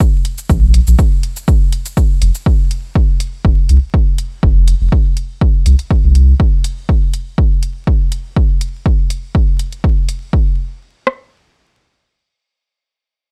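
A deep, round and soft sub bass, with a fast attack and a sustained triangle and square-wave tone, sits up front with sidechain pumping from 0.5 to 6.3 s in this hazy, meditative dub techno passage cut from a longer piece. An up-front, overdriven deep house kit with a punchy kick and rim click drives the 122 BPM 4/4 groove, with a light swing on the 16ths. A quieter layered cabasa and hi-hat, also overdriven, runs beneath until 10.2 s, all in a dry mix dusted with vinyl crackle and tuned to A4 = 441 Hz.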